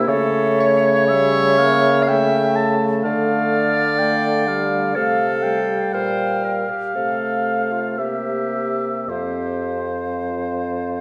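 Classical chamber music for wind quintet, this slow romantic movement in 3/4 unfolds with a lyrical mood and flexible rubato across an 11-second passage cut from a longer piece. A hollow, airy concert flute carries the melody from the background with vibrato, while a mellow oboe with a soft attack sings a second line above a bright, punchy clarinet up front and a warm, present French horn in the accompaniment. A bassoon with a smooth top anchors the bass up front, and the quintet sits in a wet concert hall reverb as the harmony moves from A7/C# through Dm and Gm/Bb to C7 before settling on F5.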